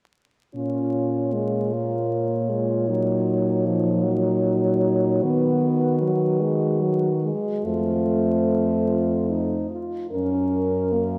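A mellow French horn sits up front in the middle register, carrying the accompaniment beneath a yearning, melancholic classical passage for horn quartet that moves in a lilting 6/8 with free, rubato pacing. Above it, a dark horn sings the melody and a soft-attacked horn traces a second line, both entering at 0.5 seconds, while a punchy low horn anchors the bass. The whole quartet blooms in a long church reverb over a bed of vinyl crackle, and the passage is cut from a longer piece, drifting toward a Gb chord at 10.1 seconds.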